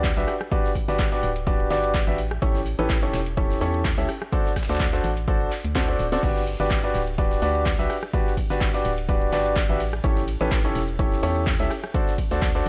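A bright, up-front baby grand piano plays a joyful riff with audible action noise, sidechain pumping and analog delay over a hollow, organ-like FM bass that also pumps, a punchy tape-warm electronic kick, a layered house kit of cracking snare, metallic hats, handclaps, rim clicks, ride and crash, and a gritty sampler-style soul kit in the background, in this feel-good swung piano house excerpt moving through Gmaj7, A7 and D7 with a drum fill at 5.8 seconds and a dry, gritty hardware sound.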